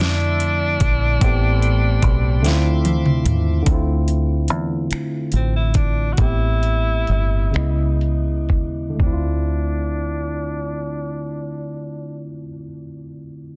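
A dry, dense and heavily limited modern mix, dulled by a low-pass filter, carries this late-night, sultry fragment of slow six-eight R&B cut from a longer piece. A breathy, vintage tenor saxophone sings a jazz-style subtone melody with vibrato and scooped notes through a digital delay, over a worn, slightly out-of-tune tine electric piano with light overdrive and a round, foam-muted dub bass sitting up front. A reedy tonewheel organ with key click and slow rotary speaker holds sustained chords only until 3.7 seconds, while the electronic kit's knocking kick, deep snare, metallic hats and finger snaps play a fill from 2.4 seconds and drop out at 9.2 seconds, as the music slows and a filter sweep moves across the minor ninth chords.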